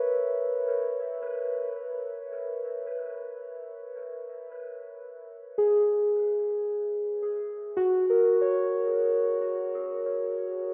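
In free time and tuned to A4 = 439 Hz, this serene, melancholic ambient fragment features a lone muted, felt-like synth keyboard, dark, warbling and intimate with fast-attack, decaying notes, set up front and bathed in chorus, dub echo and a wet spring reverb, holding a G#madd9 chord before the harmony dissolves at 7.2 seconds.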